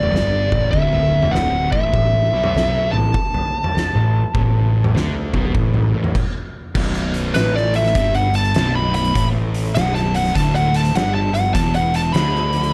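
A compressed fuzz lead guitar sits up front with a slapback echo, carrying the melody through this heavy, sludgy stoner and doom metal piece in B minor at 100 BPM with a swung 4/4 feel. Beneath it, two thick fuzz guitars grind out the riff over D5 and A5 chords, one very quiet and one in the background, while a growly, bright overdriven bass and an oversized low-tuned drum kit with a fat snare, punchy kick and a bright stone-room sound drive the low end. After a stop at 6.1 seconds, the lead breaks into a solo at 6.7 seconds over Bm and E5, and a very quiet, double-tracked sludgy distorted guitar joins the riff at 6.8 seconds, all within a dark, warm production with light reverb.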